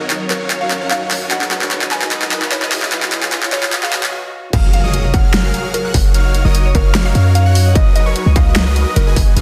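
Euphoric and lush, this future bass excerpt runs at 149 BPM in a half-time feel in F# major, moving from a build-up into a drop at 4.5 seconds. The opening layers a distant, bowed string section holding sustained chords, a ringing Celtic harp playing arpeggios with a gritty 12-bit sampler character and delay, and huge, detuned supersaw chords carrying a bright riff, all pumping against the sidechain. A woody, round mallet-like synth pluck carries the melody with chorus, phaser and delay, while a dubstep kit with a huge snare, bright hats, handclaps and crash drives a fill under an electronic riser, which gives way to a brief stop at 4.1 seconds. At the drop, a boomy 808-style bass takes the front alongside a distorted, layered electronic kick, an impact hits, and a soft, dreamy lead with vibrato and chorus floats high above in arpeggios. The harmony cycles through rich extended chords over an F# pedal, such as D#m9/F# and G#m7/F#, landing on F#maj7 at the drop. 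The mix is dense and heavily limited, with light reverb and a tape-tinged sheen on the drums.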